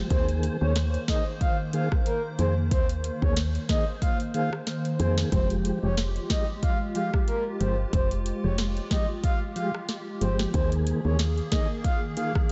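A breathy, flute-like synth lead carries the melody from 0.1 seconds, its soft, sustained tone thickened by chorus and tape echo as it moves between Bb4 and F5. This tough, sultry dancehall fragment at 92 BPM in 4/4 swings its sixteenths, driven by an electronic afro-pop kit placed up front with a deep kick, sharp snare, rim clicks and metallic hats. A woody, round FM bass with a fast attack and decaying notes sits equally forward, stopping at 11.4 seconds. Underneath, a mellow tonewheel organ spun through a fast rotary speaker and chorus vibrato accompanies until 12.3 seconds, while a hollow, warbling vintage pad holds slow-blooming chords through ensemble chorus, both organ and pad pumping under sidechain compression. The harmony shifts from Ebsus4 to Fmadd9 and back, and the whole mix is dreamy and dark-toned, soaked in a church-like reverb.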